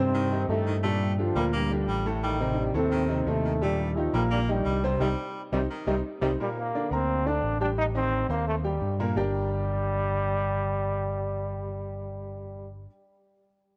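A brilliant, up-front solo trombone with light vibrato takes over the melody at 6.4 s from a punchy, tight trombone section in this fiery, driving Latin piece in G minor at 173 BPM, while a distant, bright baritone saxophone adds a second line through the opening, a clear but boxy grand piano accompanies, a round, amped fingered electric bass anchors the low end, and a band accent arrives at 5.0 s within a dark production bathed in moderate plate reverb.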